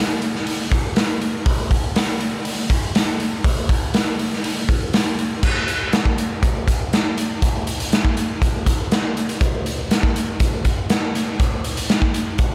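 A raw, up-front drum recording opens the frame, dry and close with little reverb, the kit saturated and gritty with a rolled-off top end and a pumping sense of the bright stone room around it. This rock excerpt moves at 121 BPM in a straight 4/4, and its mood sits somewhere between wistful and blissful. The acoustic garage kit is the only part, entering at 0.2 seconds and playing through to 12.5 seconds with crash cymbal, hi-hat, punchy kick and a medium-tuned snare. The first passage runs to 5.4 seconds, where a second section takes over and carries on to the end of the cut. The result is a rough, warm drum performance taken from a longer piece.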